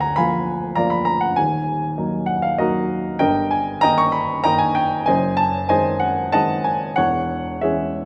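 A single baby grand piano sits up front in a moderate recital hall, its natural, warm tone ringing with short sustain against a reverb tail of about 1.4 seconds. This is a romantic classical character piece for solo piano in E-flat minor, cut from a longer work, and its mood is brooding and stormy. The music moves in 3/4 at around 96 BPM, but the beats are uneven and the rubato lets the pulse stretch and give. Across the 8.1 seconds the piano spans from a deep D1 up to C#6, giving the dark harmony a full low foundation. The chords pass from Bb7/D to E-flat minor, then through D#/G and G#7/F# before arriving at C#m/E at 7.0 seconds, keeping the tension restless throughout.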